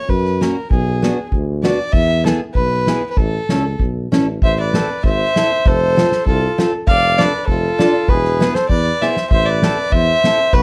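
Alpine folk for a dance band, jolly and bouncy at 98 BPM in 2/4, shifting from A major to A harmonic minor at 4.4 s in this short cut from a longer piece. An up-front fiddle with a reedy, gut-string tone carries the melody over a mellow tuba bass with light vibrato, a soft-mallet drum kit with a boomy kick, and a bright, boxy fingerpicked parlour guitar with audible finger squeaks. A clear, classical-style trumpet adds a quieter second line from 4.4 s, a drum fill lands at 9.0 s, and light reverb colours the dark production.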